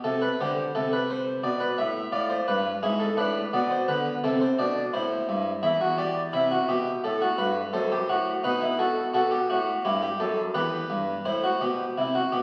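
A solo harpsichord carries this baroque-style three-part fugue in A minor, its plucked French-style tone round and close up front on a single set of strings. The mood is contemplative and solemn, moving at a steady 86 BPM in straight 4/4, with the voices spanning from E2 up to E5. The harmony travels from A minor through half-diminished and dominant chords into E minor, then returns toward A minor as a new section begins at 11.3 seconds. A recital hall's reverb gives the instrument a lingering, wet bloom, while the crackle of a very old 78 rpm record lends the sound an aged, dusty patina. Cut from a longer piece, this 12.4-second fragment ends just after that new section starts.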